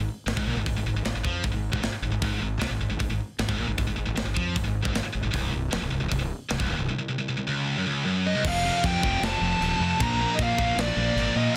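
This short, aggressive heavy metal passage, cut from a longer piece, opens at 154 BPM in straight 4/4 with two picked electric guitars and a fingered electric bass playing a heavy riff. One guitar is bright, high-gain and up front, while the other is sludgy and overdriven, and the bass growls underneath with punchy fuzz. The tight metal drum kit enters at 0.3 seconds: an acoustic studio-room kit with a tight kick, medium-tuned snare, hi-hat, crash and china cymbal, mid-forward and up front with a rolled-off top. The riff starts on an Ab power chord and moves into a chordless stretch at 5.3 seconds. At 8.3 seconds a dark, high-gain lead guitar enters up front with a high melody, and from 8.4 seconds the feel drops to half time over F and then Bb. Light reverb surrounds the parts, and the dense, heavily limited modern master keeps the whole passage crushing and loud.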